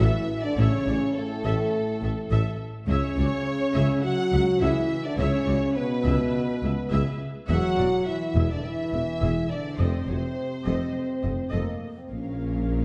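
A dark, epic cinematic passage, cut from a longer piece, opens with the full orchestra at once: a mellow French horn section holds sustained chords over a distant, roomy trombone section, while a tuba, bowed double basses and a very quiet cello section carry the bass. Lush violins with vibrato sing the melody in the background, a second violin line drops out at 11.5 s, and a close viola section adds expressive accompaniment with soft attacks and portamento. Wet scoring-stage reverb and a dark, warm production surround the harmony as it moves from A through C#m and E to F7 and a closing Bbm.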